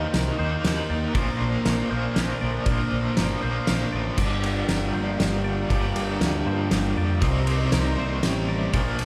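Cinematic and melancholic, this post-rock passage, cut from a longer piece, moves at 118 BPM in 3/4 and G minor, with the harmony shifting from Bbadd9 to Gm7 at 4.2 s and then on to Cm7. Up front, a biting overdriven guitar with tremolo plays a riff over a growling, overdriven picked bass and a loose indie drum kit of punchy kick, fat snare and dark crash and ride cymbals; the kit enters at 0.1 s with a gritty, pumping room sound. Behind them, a very quiet clean electric guitar and a twangy, scooped electric guitar play arpeggios while a silky, detuned analog string pad with ensemble chorus and vibrato holds sustained chords, and the band sits in a moderate large-studio reverb that suggests players performing live in one room.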